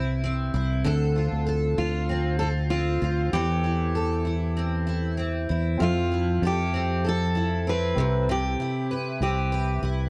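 Acoustic pop with a sunny, easy-going mood at 97 BPM in a straight 4/4, cut from a longer piece and moving through Cmaj7, Dm7, Am7/E and Fmaj7 chords. A bright, double-tracked picked steel-string guitar with fresh strings and a jumbo body sits up front beside a round, dark fingered electric bass, while a fingerpicked steel-string guitar carries the melody from 1.8 seconds, its finger squeak audible. A soft, felt-muted upright piano joins in the background at 5.8 seconds, and the whole mix is wrapped in light reverb and a worn cassette-tape character with warbly pitch drift.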